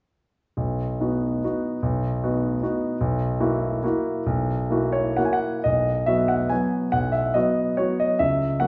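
A solo baby grand piano opens at 0.6 seconds with an elegant, graceful waltz in 3/4, its phrasing shaped by a rubato feel that lets the pulse breathe. The piano's tone is warm, polished and present, placed up front and spanning from deep low notes to its upper register. The harmony settles on the home chord before moving to a dominant seventh over the tonic in the bass at 3.0 seconds, then returns home as a new section begins at 5.6 seconds. A recital hall's lush reverb surrounds the instrument, heard from further back in the room, giving the classical miniature a gentle sense of space. This brief passage, cut from a longer piece, ends at 8.7 seconds.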